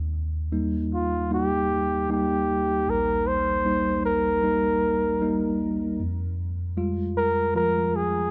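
Heartfelt and emotional, this pop ballad excerpt moves at 77 BPM in Eb major, with a clean tine electric piano up front laying down the accompaniment from the start and shifting from Eb to Fmadd9 at 6.0 seconds. A breathy flugelhorn enters at 0.9 seconds to carry the solo melody in a jazz style, its warm, smooth top colored by light vibrato and scooped notes. Both sit close in a moderate scoring-stage reverb that gives the short passage a gentle sense of space.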